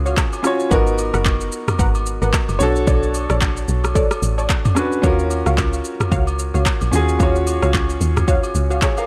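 A round, dark log drum bass sits up front in this hypnotic, deep amapiano excerpt at 111 BPM with a swung 16th feel, joined by a clear, intimate grand piano with audible action noise, a punchy, nasal sawtooth chord stab with chorus and delay, a tape-warm deep house drum kit of kick, handclaps, rim click, shaker and toms, background agogo bells and woodblock, and a barely audible downlifter in the first 0.7 seconds, all moving through Ebm9, Abm9 and Bm9 chords in light reverb.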